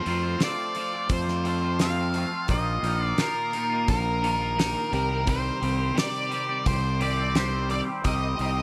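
Hypnotic and mysterious, this short psychedelic rock excerpt moves at 86 BPM in 4/4 in C dorian, passing through F, Bbsus4 and Cm. A dark, up-front octave-fuzz lead guitar carries the melody with distortion and dub echo, while a bright, twangy, double-tracked electric guitar plays a clean picked riff through phaser and dub echo. Underneath, an overdriven fingered bass and a cloth-damped drum kit with a fat snare, tight kick and rolled-off top sit in a small room with light reverb, all in an echo-heavy mix.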